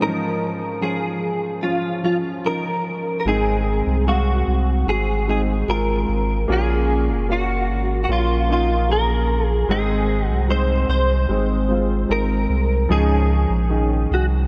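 A slow, straight 4/4 pulse at 74 BPM carries this emotional, heartfelt pop ballad in Db major, heard as an excerpt cut from a longer piece. A bright, clean electric guitar, recorded direct, picked and compressed, sits up front with the melody between F4 and C5 from the opening until 14.2 s, colored by an ensemble chorus. Alongside it a polished, present grand piano plays the accompaniment across Ab2 to F5, tinted by analog chorus. At 3.3 s a round, sine-like sub bass enters, deep and mellow with a fast attack and sustained notes, spanning Gb1 to Db2. The harmony moves from Dbadd9 through Ab and Bbm, back to Ab, and returns to Dbadd9, while a huge ambient reverb with a 4.0-second tail soaks the mix in a dreamy haze.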